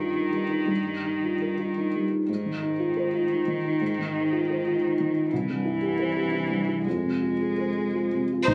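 Neoclassical piano and strings in F minor, reflective and longing, moving in a rubato 3/4 at around 110-123 BPM. A soft, felt-muted upright piano, boxy and intimate, carries the accompaniment up front while a smooth-topped solo cello sings a bowed second line with vibrato through a progression from Ebadd9/G to Fm7/Ab, C and Fm. At 8.5 s the piano and cello stop as a focused solo violin takes the melody, joined by an expressive viola with portamento, a deep sine sub bass with octave, and a barely audible warbling, nostalgic tape-like pad, all caught in a dim, phone-recorded room with club reverb.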